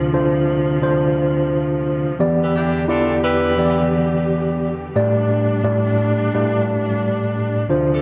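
A mellow tine electric piano sits up front with a cassette-tape tint, playing accompaniment over a dark, veiled string section bowing sustained chords with vibrato. Together they open this reflective, gritty hip hop passage at 87 BPM with a swung 16th-note feel, moving through Dm7, Em7 and A7sus4. At 2.4 seconds a warm, close-miked jazz saxophone section enters with tight stabs carrying delay, while the whole mix wears worn, warbling tape, vinyl crackle and the bloom of an echo chamber.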